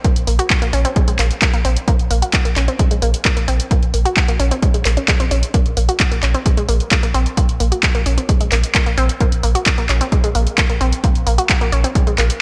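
A straight 4/4 pulse at 131 BPM drives this relentless peak-time techno excerpt in Bb minor, where a punchy, tape-warm electronic kick and an up-front analog drum machine of handclaps and pumping hi-hats with gated reverb push alongside a deep, round sub bass on Bb1 with tube saturation and low-pass filtering, while a nasal, wave-folded analog pluck riff between Ab3 and Gb4 sits lower in the mix with chorus, delay and sidechain pumping, all inside a bright 1980s-style digital production with light reverb.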